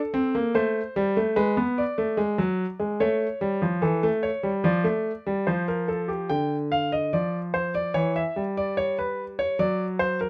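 A baby grand piano, intimate and up front with audible action noise, plays a driving yet solemn baroque-style classical two-part invention in straight 4/4 at 73 BPM, ranging from D3 to G5 through Bm6, A and Dm/F before moving at 6.3 seconds into a new section over G5/D, Em6 and D/F#, caught by close, detailed microphones in light reverb in this short cut from a longer piece.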